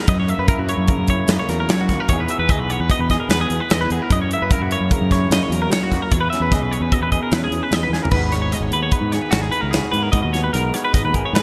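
This math rock and midwest emo excerpt moves at 149 BPM in an intricate, playful 5/4, with a straight feel and tuning set to A4 = 441 Hz. A twelve-string electric guitar sits up front, spinning clean, compressed, twangy arpeggios in a high register with a subtle chorus shimmer. Beneath it, an electric guitar through a small old amp supplies slightly broken-up, picked accompaniment. A growling fingered electric bass adds overdriven weight, heard both direct and amped. A modern studio drum kit with a tight kick, medium-tuned snare, hi-hat, toms and crash cymbal carries gated reverb and plays a fill at 7.9 seconds. That fill leads into a new section at 8.1 seconds, where the harmony moves from F#7, Emaj7 and E6 to G#m9, all captured in a small room with a bright, 1980s-style digital sheen.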